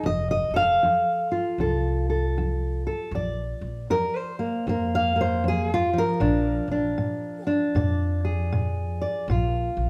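A fingerpicked steel-string acoustic guitar, dark and full-bodied with the dusky tone of old strings, carries the melody up front through this gritty, soulful acoustic country blues excerpt at 78 BPM with a swung 4/4 feel, backed by a woody pizzicato upright bass in a moderately reverberant large room where the duo plays live, moving from F to Bb7 at 3.1 seconds.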